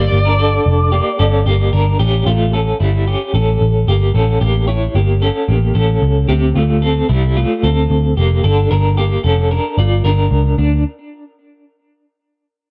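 Wistful and bittersweet, this short excerpt of jangly indie pop moves at 112 BPM in a straight 4/4. A bright, twangy electric guitar through a small old amp plays up-front arpeggios with tremolo and tape echo, over a dark, round, foam-muted picked bass, while an overdriven lead guitar through a small cranked amp sounds a brief melody with tape echo that stops at 1.4 seconds. The dry sound carries the worn, warbling pitch drift of old cassette tape, with chords moving from Gm7 through A7 and Dm7 before the parts fall away at 10.8 seconds.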